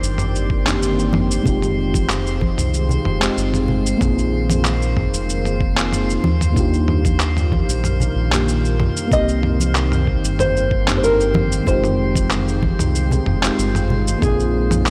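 A mellow FM electric piano with chorus, phaser and tape echo opens this wistful, relaxed sunset chillout excerpt at 94 BPM alongside a lush, detuned unison pad, a round, deep analog bass, a dusty, overdriven soul sampler-style kit of handclaps, shaker and toms, and a drifting, glassy harmonics texture, with a thumpy, gritty electronic kick entering at 0.5 seconds, low-tuned congas sitting in the background from 1.1 seconds, and a thumb-plucked nylon-string guitar carrying the melody through tape echo from 9.1 seconds over Cm9, Fm9, Bb9sus4 and Ebmaj9 chords, all in a dry, gritty hardware recording with light reverb.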